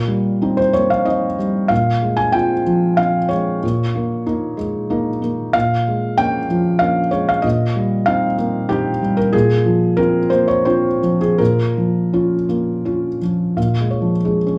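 Rubato and in 3/4, this reflective, melancholic neoclassical minimalist piece drifts between 79 and 97 BPM in Bb dorian. A solo felt-muted upright piano plays from Bb2 to Ab5 with a soft, intimate, mellow tone, sitting up front with audible action noise under light studio reverb. Chords such as Cm7/Bb, Fm/Bb and Eb7sus4/Bb circle back to Bbm, and at 13.6 s this excerpt from a longer piece turns briefly to a new section on Bbm7.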